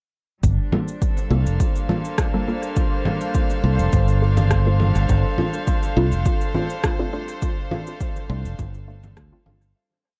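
Hazy and spacious, this short ambient dub piece in G minor moves at 103 BPM with a light 16th-note swing, settling on Gm9 before shifting to Dm7 at 5.1 seconds and fading out from 6.6 seconds. An up-front, tube-saturated fingered electric bass carries a dub-style line under a punchy, overdriven electronic kick, while a sparse, tape-warm beat of shaker, low conga and rim click trails dub echo. A distant, earthy chamber string section bows slowly shifting chords, muted sawtooth stabs play off-beat chords through phaser and echo, and a bubbling, resonant stepped-filter texture holds a high C5 in the background of the dark production.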